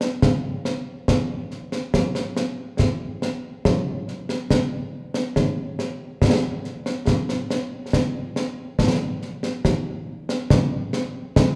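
A stately 3/4 pulse at 70 BPM with a straight feel drives this brief Scottish traditional passage, cut from a longer piece. Concert snare drum and concert bass drum carry it from 0.0 to 11.6 seconds, the only part heard. Their acoustic sound sits up front with the close feel of a small room, and bright cymbals color the kit. Around them, the church or concert hall adds a wet recital-hall reverb with a 1.6 second decay. The mood is proud and ceremonial.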